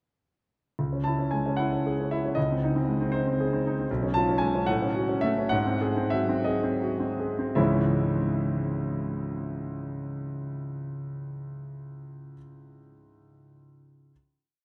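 Brooding and bittersweet, this short romantic character piece for solo piano unfolds in C# minor at a rubato pace of roughly 50-80 BPM, counted in dotted quarters in 6/8, with the tuning set to A4 = 442 Hz. The warm concert grand sits up front, its smooth, vintage tone and deep bass carrying a single-line melody over rippling figuration that spans B1 to A5. The harmony moves from C#m through G#/C#, C#7/B and F#m/A to a G#7, and the music slows down from 3.1 s until it settles on a closing C#m chord at 7.6 s. That final chord lingers through the wet cathedral reverb, whose 6.3-second tail fills a vast, echoing space. The piano's last sound fades at 14.1 s, rounding off a complete piece.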